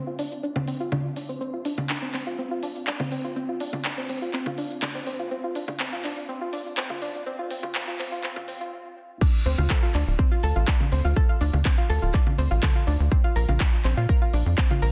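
A dense, heavily limited mix in a moderate hall-like ambience carries this dark, melancholic melodic techno excerpt at 123 BPM, where a soft, round pluck arpeggiates from C4 to Bb5 with chorus, delay and sidechain pumping under a filter sweep across a build-up over a house kit of congas, crash, handclaps, crisp hats and shaker, then after a stop from 8.7 to 9.2 seconds the drop lands with a punchy, layered electronic kick and a tight, driving sawtooth-and-square sequencer bass with tube saturation moving from Dm to Bb.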